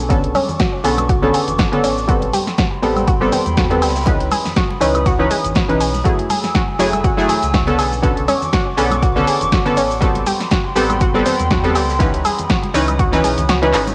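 Smooth and warm, this deep house excerpt moves at 121 BPM in 4/4 with a gentle 16th-note swing, tuned slightly flat to A4 = 436 Hz. Up front, a muted, detuned sawtooth dub chord stab with a filter sweep, chorus and analog delay pumps against the sidechain, while a warbling, nostalgic square-and-triangle pad with ring modulation, chorus and its own reverb sits mellow in the background. A round, nasal analog pluck plays wave-folded arpeggios through chorus, delay and sidechain pumping, over a deep, full sine-and-triangle sub bass doubled at the octave. The chords cycle through Bm9, Am9, C#m9 and F#m9. A dry, punchy electronic kick and a punchy analog drum machine with handclaps, hi-hat, shaker, snare and woodblock share studio reverb, joined by hard-hand congas in a small room and a very quiet soft-mallet kit with hi-hat and a medium-tuned snare. The whole is a home cassette recording with moderate spring reverb, and the kick drops out at 13.5 seconds ahead of a drum fill at 13.7 seconds.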